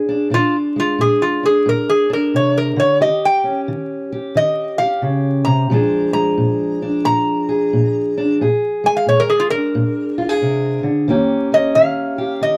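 A metal-body resonator slide guitar carries the melody up front, its bright, nasal, metallic voice played with a steel bar and fingerpicks in a solo that runs from 0.3 seconds to the end of this short cut from a longer piece. Beneath it, a fingerpicked steel-string parlour guitar with old strings supplies a dark, woody, boxy accompaniment, sounding from the very start at 0.0 seconds. The feel is laid-back and swaggering acoustic country blues in a swung 4/4, moving between Bb7 and Eb7. The pair is heard from further back in a wet booth, with vinyl crackle adding an aged patina to the sound.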